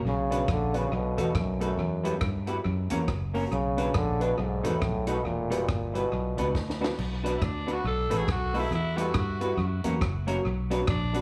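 A clear, punchy trombone carries the melody over a dark, round fingered bass from 0.1 seconds, opening this mischievous, driving ska cut with a swung lilt. Almost at once a clean electric guitar, a woody upright piano tucked into the background with short, stabbing chords, and a compact cocktail drum kit join. The kit is dry and natural, with a high-tuned snare, punchy kick, rim clicks, hi-hat and dark cymbals. The trombone drops out at 6.5 seconds as a drum fill leads into a new section, where a raspy, gritty alto saxophone enters at 7.4 seconds for a present, vibrato-laden solo. Tape echo colours the horns, guitar, piano and drums, while the bass sits up front in a light studio reverb as the minor-key changes cycle beneath.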